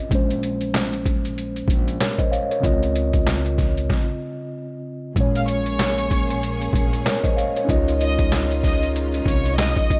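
Lightly reverberant studio ambience frames this gritty, dark boom-bap hip-hop excerpt in Bb minor at 95 BPM with a swung 16th feel, where a compressed, pitched-down sampler-style drum kit with thumpy kick, medium-tuned snare, hi-hat and handclaps sits up front beside a mellow, tape-coloured tine electric piano playing Bbm9 and Dbmaj9 chords, while a woody pizzicato upright bass on gut strings holds the low end; after a stop from 3.9 to 5.2 seconds, a smooth, lush bowed string section enters with sustained chords as an expressive violin section carries a vibrato melody through tape echo.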